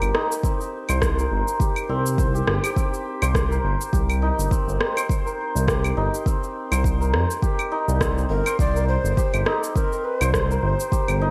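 Organic downtempo with a mystical, warm mood, built on a single minor-seventh chord with a swung sixteenth-note feel, this excerpt opens on shimmering, ringing santur arpeggios through digital delay, over a smooth, nasal, detuned synth bass that pumps under sidechain. Overdriven electronic claves, cabasa and rim click sit in gated reverb, and a deep, up-front electronic kick drum enters at 0.4 seconds. At 8.3 seconds a mellow, airy low wooden flute in Native American style arrives with a soft attack and vibrato, all set in a bright 1980s-style digital production with light small-room ambience.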